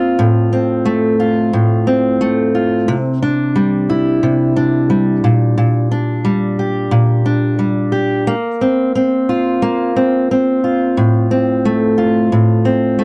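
A fingerpicked steel-string acoustic guitar with a woody, old-string tone sits up front alone for the whole 13 seconds of this heartfelt, sunny pop fragment in F major at 89 BPM in a straight 4/4, moving from F/A through Cadd9, Gm/Bb and Bbsus2 back to F/A in a dry, close 1970s-style studio sound with a moderate booth ambience.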